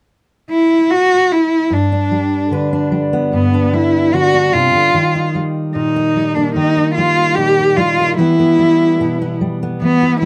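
Close, detailed microphones and a light reverb give this short acoustic folk passage an intimate, present sound, with both instruments placed up front. It is gentle and peaceful, moving at an unhurried 74 BPM in a straight 4/4, and it is cut from a longer piece. A single bowed cello carries the melody from 0.5 seconds, its rich, slightly nasal tone shaded with vibrato and sitting in a focused middle register. At 1.7 seconds a fingerpicked steel-string dreadnought guitar enters as accompaniment, full-bodied and reaching from its low bass strings up into the treble. The harmony settles on G, then shifts to E-flat and finally E minor, a quietly colorful turn beneath the singing cello line.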